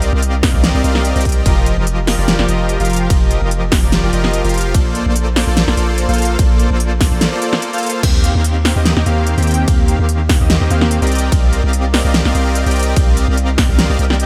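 Bathed in a digital ambience, this lush, bright future bass clip at 146 BPM rides a swung half-time feel, pairing an airy, detuned supersaw riff and a deep, mellow 808-style sine bass, both pumping under sidechain, with a tape-toned big-room dance kit of huge snare, crisp hats, crash and ride, plus a punchy layered electronic kick from 0.4 seconds, as the chords move from Cm11 through F7sus4 and Bbmaj7 back to Cm11 after a brief break at 7.2 seconds.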